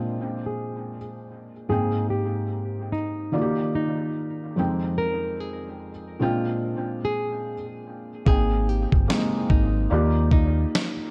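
A felt-muted upright piano stands out in this reflective, melancholic lo-fi hip hop fragment, its soft, thick-felt tone carrying audible action noise and short sustain, colored by cassette tape, a low-pass filter and tape echo. A fingerpicked nylon-string guitar carries the melody between Eb4 and Bb4, full-bodied and classical in character, also filtered and echoed, while a filter sweep runs through the first 8.3 seconds. At 73 BPM in 4/4 with a 60% swing on sixteenths, the harmony moves through lush chords such as Bb13, Abmaj7, Ebmaj7 and Fm9. At 8.3 seconds a dusty sampler-style drum kit arrives up front, gritty and compressed with a thumpy kick and fat snare while the hi-hats stay muted, joined by a deep, round dub bass picked on electric. The echo-heavy mix sits in a small, lightly reverberant room with a cassette-worn finish, cut from a longer piece.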